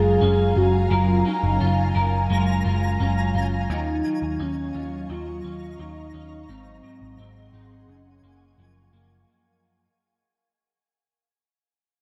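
Blissful and ethereal, this dream pop fragment, cut from a longer piece, drifts at 86 BPM in a straight 4/4, centered on Gb lydian and fading out across its full length. A round, foam-muted picked electric bass sits up front with a dark, amped tone, anchoring the harmony as it moves from Gbmaj9 through Ebm9 and Ab7 before settling on Gbmaj7. Above it, a clean, scooped electric guitar plays picked arpeggios through ensemble chorus and dub echo. An airy, detuned sawtooth pad holds slow-blooming sustained chords with long release and its own reverb, while a velvety synth lead carries the melody with vibrato, chorus and dub echo. From 2.0 s to 8.2 s, a faint, twinkling granular texture adds a sparkling octave-up shimmer, and the echo-heavy mix sits in moderate spring reverb and digital ambience.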